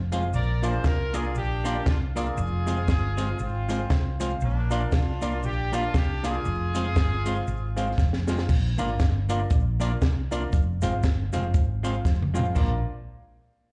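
A swung 118 BPM ska groove in 4/4 drives this joyful, cheerful Bb mixolydian excerpt, with a compact cocktail drum kit up front (punchy kick, high-tuned snare, dark, rolled-off top) and a round, hollow-body fingered electric bass underpinning the Bb-to-Fm changes. A clean semi-hollow electric guitar, a woody, slightly detuned upright piano with audible action noise punching out stabs, and a grainy cabasa in the background all carry slapback echo, while a horn section with light vibrato states the melody from 0.3 until 8.0 seconds. Drum fills arrive at 8.0 and 12.1 seconds, and the whole performance sounds like a live gig heard through a club PA, with reverb and a dull top end.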